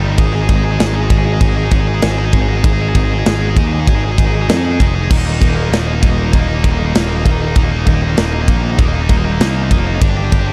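Dark and relentless, this short heavy metal excerpt, cut from a longer piece, moves at 98 BPM in a straight 4/4 through a single section built on Ab5, Eb5 and G5 power chords. A bright, double-tracked distorted guitar plays a picked riff between G3 and Ab4 over a punchy, up-front fuzz bass that is picked and overdriven, while a tight metal drum kit enters at 0.2 seconds with crash, ride, snare and kick, its cymbals glittering in a big-room sound. The dark production sits in a small room reverb, with the bass and drums pressing forward ahead of the guitar.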